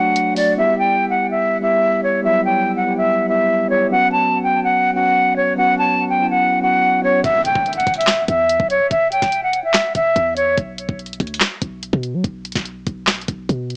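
A half-time trap groove at 144 BPM in E dorian drives this melancholic, hard-hitting hip hop excerpt, where a breathy, close-miked silver concert flute sings an expressive, tongued lead through filtered tape-worn delay over a mellow tine electric piano bathed in plate reverb, until the drums (knocking kick, sharp snare, bright hats and handclaps with gritty 12-bit sampler crunch, after a brief flicker near the start) crash in at 7.2 seconds alongside a deep, boomy 808-style bass and a distant electronic impact, the flute dropping out at 10.6 seconds, the whole piece heard through the lo-fi haze of a cassette home recording on a small speaker.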